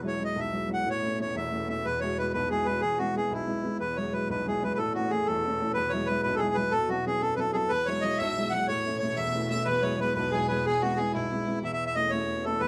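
An up-front, reedy accordion carries the melody through this lively, rollicking Celtic folk excerpt in E major, moving in 6/8 at 123 BPM over a dark, woody upright piano accompaniment and a veiled, con sordino string section holding a low drone. A biting, richly bowed solo fiddle with light vibrato adds a second line from 7.7 to 11.6 seconds, as the chords circle between Eadd9 and A with a brief Bsus4 before settling on A/E. Moderate studio reverb of about 0.9 seconds gives the ensemble its sense of space.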